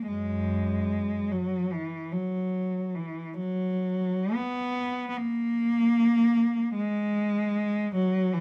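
Classical solo cello in a free, expressive style, this short excerpt from a longer piece has a serene, lyrical mood and an unhurried rubato feel. A single bowed cello plays throughout, its rich, focused tone shaped by vibrato and sitting up front in a dry, close sound. The line moves through the instrument's lower and middle register, giving the passage a grounded, singing quality.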